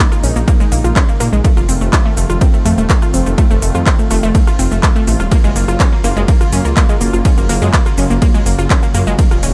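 A punchy, up-front electronic kick drives this dark, cinematic melodic techno excerpt at 124 BPM, arriving at 0.5 s beneath a deep, rumbling detuned saw bass and a layered kit of handclaps, smooth hi-hats, ride cymbal, rim click and shaker. A lush, warbling unison pluck spins arpeggios through delay with a filter sweep, while a soft-attack analog pad with chorus sustains chords in the background, both pumping with sidechain alongside the bass. The harmony moves from Bbm7 to F7 and settles on Gbmaj7 at 5.3 s, in a dry, dark production.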